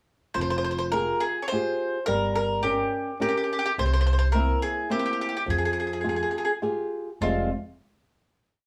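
Opening at 0.3 s with a round, double-strung picked mandolin carrying a motif-based melody in period phrases over a fingerpicked flamenco guitar's oompah bass notes and chord figures, then joined at 0.4 s by a woody pizzicato upright bass playing root and fifth on the main beats, this romantic, wistful Italian folk serenade moves in a rubato 3/4 at 105 BPM in F harmonic minor through Fmadd9, Gdim and C7 before arriving at a final chord at 7.2 s, the trio heard live together in a small room with moderate reverb.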